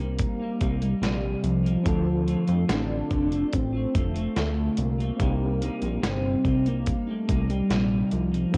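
Lonely and mellow, this 72 BPM indie and bedroom pop excerpt in C dorian drifts between Cm7 and Dm7 as a velvety, detuned synth lead carries the melody with vibrato, portamento, chorus and tape echo, a bright, twangy clean electric guitar adds accompaniment through lush chorus and warbly pitch drift, a reedy electric piano with fast tremolo sits in the background, a fat, thick analog bass with a filter sweep sits up front, and a gritty, overdriven sampler-style drum kit with a thumpy kick and medium-tuned snare enters at 0.2 seconds, all in a light reverb with the character of a home cassette recording.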